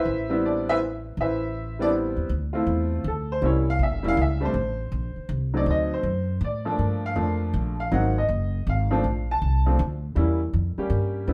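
A boxy upright piano carries the melody from the very start of this moody, swinging jazz waltz excerpt, joined at 0.1 seconds by a thumpy, woody pizzicato upright bass on steel strings, both up front in a wet studio reverb as the harmony moves from Am9 and Dm9 through C7b9, Gm9 and Bbmaj9 before settling on Edim7.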